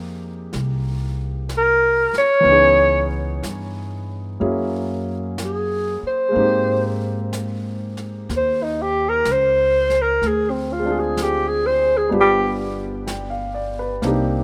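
A rough home demo mix with light reverb and a touch of studio ambience frames this smoky, melancholic jazz ballad, which is cut from a longer piece and moves at a slow 62 BPM with a gentle swing. A polished, present grand piano and a woody, bright pizzicato upright bass carry the Fm11-to-G7 changes from the start, and an airy brush kit of snare and hi-hat enters softly at 0.5 seconds. At 1.6 seconds a mellow alto saxophone takes the solo up front, its soft attacks, scooped notes and vibrato sounding distant and roomy until it stops at 12.6 seconds.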